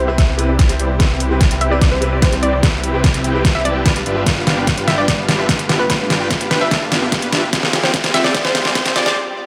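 Euphoric and lush, this future bass excerpt moves at 147 BPM in a half-time feel in C major, built entirely as a build-up with a drum fill running through it and filter sweeps on the supersaw and the pluck before a break at 9.2 seconds. A huge, detuned supersaw riff with vintage 12-bit sampler grit and a low-pass filter shares the front with a hollow, bouncy square pluck melody carrying chorus and delay, both pumping against the sidechain. Beneath them a thick, saturated detuned saw bass holds the low end, while a hard-clipped, tape-tinged electronic kick and a layered dubstep kit with a deep, up-front snare and hi-hat drive the pulse. A brilliant, worn concert grand piano adds background accompaniment with delay until 4.3 seconds, and from 4.4 seconds a punchy, wave-folded unison pluck adds very quiet arpeggios, while a biting symphonic string section quietly sustains chords. A very quiet electronic riser creeps in from 2.9 seconds as the harmony moves from Cmaj7 to G7 to Fmadd9, all set in a moderate digital hall reverb.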